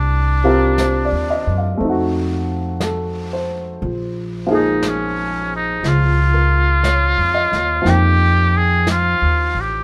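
A light reverb wraps this short, smoky jazz ballad in an intimate glow, cut from a longer piece and moving with a slow, swung lilt. The trumpet with metal mute carries the melody from the start, sitting up front with a buzzy, thin, brilliant tone, its soft attacks, scooped notes and vibrato giving the solo line a vintage flavour. The upright bass enters alongside it at 0.0 seconds, plucked on steel strings with a woody, dark voice placed close to the listener. A natural-sounding baby grand piano joins with accompaniment at 0.4 seconds, and a vintage brush kit follows at 0.8 seconds, its smooth, shadowy brushed snare and hi-hat kept quiet in the mix, recorded in a studio room. The harmony drifts from Cm9 through F7b9 and Bbm7 before resting on F9sus4.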